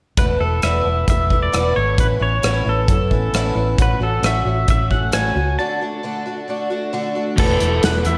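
Pedal steel guitar carries the melody across this short, jangly and hopeful folk rock and heartland rock passage, its clean, fingerpicked slide tone touched with volume swells and a slapback echo. Underneath, a picked twelve-string acoustic guitar shimmers with octave-doubled, parlour-sized warmth, also carrying slapback echo, while a round, dark hollow-body short-scale bass and a natural country drum kit with a punchy kick, medium-tuned snare, rim clicks and dark cymbals sit up front at a straight 133 BPM in 4/4. The chords move from Esus4 through Aadd9, F#m/A and D before returning to Esus4, with a break arriving at 5.6 seconds. At 7.4 seconds a crunchy, double-tracked overdriven guitar slips in from the background with a riff. A wet recital-hall reverb and studio ambience give the whole piece a big arena sound, and the passage is cut from a longer piece.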